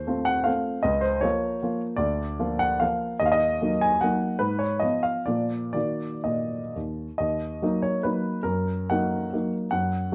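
Capricious and wistful, this brief passage cut from a longer piece is a romantic classical dance in triple time for solo baby grand piano, set in E-flat minor with dotted rhythms and a rubato feel that lets the tempo drift between 115 and 166 BPM. The piano sits up front with a present, short-sustained tone spanning Db2 to Ab5, and harmonies such as F7 over Eb and a diminished chord resolve onto E-flat minor. A new section begins at 7.2 seconds, all within a dark production and a moderate large-studio reverb.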